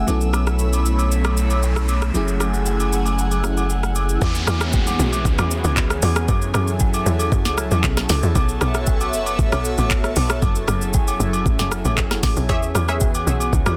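Amapiano at 116 BPM in F# minor, hypnotic and soulful, opening with a phaser-tinged FM electric piano with tremolo, a deep sub bass with a pitch-drop attack, and an airy, breathy pad that carries sustained chords through the whole excerpt with chorus and sidechain pumping, while a noise sweep builds from 0.9 seconds and the kick drops out just before the drop. At 4.2 seconds the piano and sub give way to a tight, percussive log drum bass up front, moving over chords of B9sus4, F#m9 and E6 beneath the electronic R&B kit that has played since the opening, with a knocking kick, metallic hats and a sharp, softly clipped snare, plus acoustic agogo bells and woodblock. Near the end, at 12.5 seconds, a round, evolving analog pluck adds brief stabs with chorus and digital delay, all inside a dense, heavily limited modern master.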